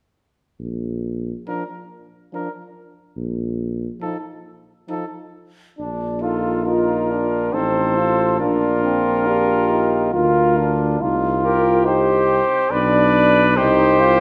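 Noble and stately, this classical brass quintet excerpt in Bb major moves with rubato at 69 BPM in 3/4: a punchy, up-front tuba sets the bass at 0.6 s, then a warm trumpet second line, a clear trombone and a distant French horn join at 1.5 s, and a smooth cornet with light vibrato takes the melody at 6.2 s, all in a reverberant recital hall.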